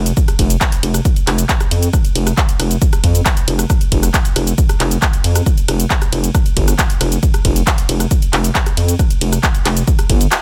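Relentless and industrial, this short cut from a longer piece of driving peak-time techno runs at 136 BPM in a straight 4/4. A gritty, aggressive synth bass sits up front between F1 and F2, its saturated tone blending square, sawtooth and sine with oscillator sync, a resonant filter pluck, a fast attack and sustained notes, all pumping under sidechain compression. A heavy, layered electronic kick drum, re-recorded in a large room, anchors the groove from 0.2 seconds. Above it, a produced techno drum kit sits forward with handclaps, hi-hat, ride cymbal, rim click and shaker, likewise carrying the character of a large room. The mix stays dry and close, with little reverb, keeping the bass and percussion tight and forceful throughout.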